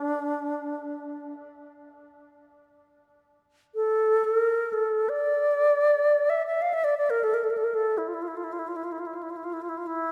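Haunting and meditative, this short world-music passage drifts in free time, taken from a longer piece. A lone alto flute carries everything from 0.0 to 10.1 seconds, moving through a D hirajoshi scale between D4 and F5, tuned to A4 = 436 Hz. Its tone is pure and bright, with vibrato, a soft attack and lifted highs, and it sits up front in the mix. A wet concert-hall reverb with a 2.4-second decay surrounds the flute, so each note hangs in a spacious, echoing room. The opening idea, heard from the start, returns at 2.7 seconds and unfolds until the cut.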